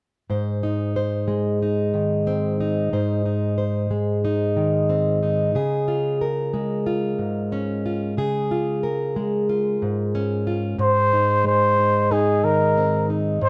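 A steady, straight 4/4 pulse at 91 BPM drives this anthemic, uplifting folk fragment in Ab major, cut from a longer piece, where a fingerpicked plugged-in acoustic archtop guitar sits up front as accompaniment from 0.3 seconds, its warm tone carrying audible finger squeak as the harmony moves from Ab to Db and back. At 10.8 seconds a mellow trumpet enters with a solo melody in a classical style, touched with light vibrato and treated with slapback echo and plate reverb. The whole sits in a moderate large-studio space with a dark, warm production.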